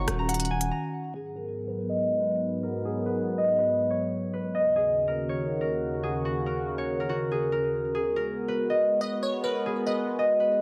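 A half-time 4/4 drill pulse opens this menacing hip hop piece, with crisp hi-hat and rim click from the drum kit and a heavy, saturated 808-style bass hitting together only in the first 0.7 seconds before a brief break. A ringing, fingerpicked concert harp carries the ominous melody throughout, over a detuned sawtooth pad holding sustained chords with chorus and a filter sweep across the middle section. A glassy, crystalline wavetable pluck adds a second line at the start and returns near 9.0 seconds, all in a light reverb.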